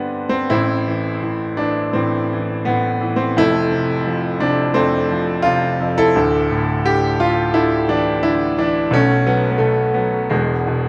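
A solo grand piano opens this short classical cut in A minor, its brilliant, open tone sitting up front with long sustain as it moves from G to A minor at 0.5 seconds and on through F and Dsus2. The mood is moody and cool, the lyrical line unfolding in a free, rubato 4/4 around 86 BPM across a range reaching from the deep bass up to B4. A moderate recital hall reverb surrounds the instrument as the harmony passes through B5 before settling on E at 10.3 seconds.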